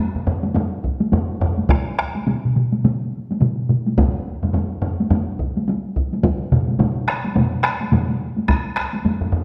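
The rhythm moves at 106 BPM in 4/4, with a 60% swing on the sixteenths that gives this driving, ceremonial Japanese taiko ensemble piece its rolling momentum. Four taiko ensemble parts build the groove in staggered entries: the first arrives at 0.2 seconds, others follow close behind, and the last joins at 1.7 seconds. Two of the parts are struck with hard sticks, one carrying a small-room character and the other a livelier room sound. The other two use heavy sticks and sit close, one of them notably dry. All four drums are placed up front, while a recital-hall reverb with a 1.4-second decay wraps the ensemble in a resonant, formal space, and the passage, cut from a longer piece, stays in a single section that ends at 9.4 seconds.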